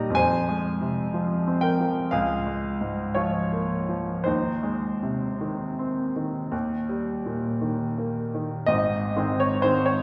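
Rubato and unhurried at 52-66 BPM in 4/4, this serene, tender romantic nocturne in Ab major, cut from a longer piece, features a clear, present grand piano playing alone up front across a range from Ab1 to Bb5, moving from F minor through Bbm7/Db and Ab/Eb to Eb before settling on Ab at 8.7 seconds as a new section begins, all bathed in the wet reverb of a recital hall.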